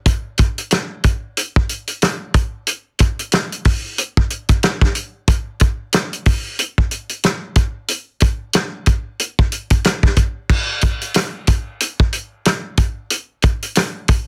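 Moody and dark, this hip hop piece rests on a single acoustic soul drum kit in 4/4 with a swung sixteenth-note feel, playing from 0.1 s to 14.3 s with kick, snare, rim click, hi-hat and crash cymbal. The kit sits up front, dry and mid-forward with a rolled-off top, a medium-tuned snare and a punchy kick that carries soft clipping. Light reverb frames a dense, heavily limited modern master, and the music moves into a new section at 10.5 s.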